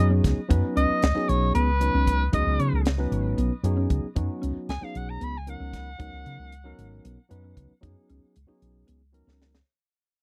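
A dry, close 1970s-style studio sound frames this slick, nocturnal electric jazz fusion fragment in 7/8 at 229 BPM, where a warm, vibrato-laden soprano saxophone solos with scooped notes and tape echo until 7.1 seconds over a barky tine electric piano on a C#9sus4 chord, a round, punchy fretless bass up front, dark chorused guitar stabs in the background and a tight funk kit with a high-tuned snare that closes on a drum fill at 9.3 seconds, all beneath a fade-out spanning the entire fragment.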